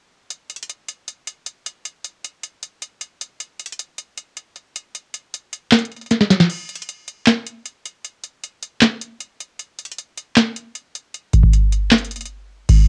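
A dry cassette home recording captures this hard-hitting, brooding hip hop cut at 155 BPM in a half-time 4/4 feel, built entirely from a booming analog drum machine placed up front. Its snare is tonal and its hi-hats metallic, with a short room on the snare, handclaps and hats, while crash cymbal accents round out the kit. The deep kick stays muted until a fill ends at 6.5 seconds, and a brief break arrives at 12.3 seconds.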